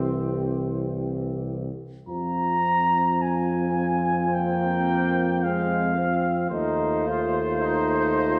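The recording sits in a wet scoring-stage reverb with a 1.9-second decay, heard from further back in the room. This solemn, yearning classical brass-band excerpt moves at a slow, rubato 48-56 BPM in 4/4, like a hymn, and is cut from a longer piece. A mellow solo cornet carries the melody up front between C5 and Bb5, with light vibrato and a smooth top, while a soft-attacked French horn section adds a quiet second line in the background. A solo trombone with vibrato and a warm, distant, roomy trombone section fill in the accompaniment, and a solo tuba with light vibrato anchors the bass up front, low between C2 and F2. All five parts sound together throughout, the harmony resting on C before turning to F minor at 2.1 seconds and settling on F7 over Eb at 6.5 seconds.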